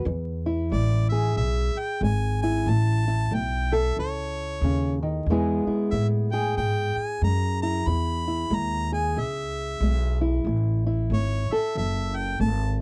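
A loping 4/4 swing at 92 BPM, with the eighth notes lightly swung, drives this short cut from a longer acoustic country blues piece in E major, its mood swaggering and soulful. Underneath, a pizzicato upright bass on steel strings sits up front with a growly, woody tone, while a fingerpicked ladder-braced acoustic guitar on old strings fills in the accompaniment with a dark, boxy sound. At 0.7 s a harmonica takes the lead as soloist, played jazz style with scooped notes and a light vibrato, its close-miked tone bright. The harmony moves from E to A, back to E, and lands on an A5 at 10.5 s within a single section that runs to 12.8 s. The dry, close 1970s-style studio sound carries vinyl crackle, giving the performance an intimate, vintage feel.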